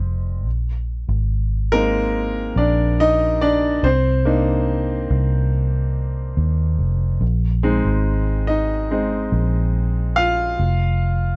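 Longing and emotional, this short excerpt from a slow pop ballad at 71 BPM sets a clear, natural grand piano up front, moving through Bb7sus4 and Cm7 chords, over a dark, round, punchy muted electric bass in a dry, close 1970s-style studio sound.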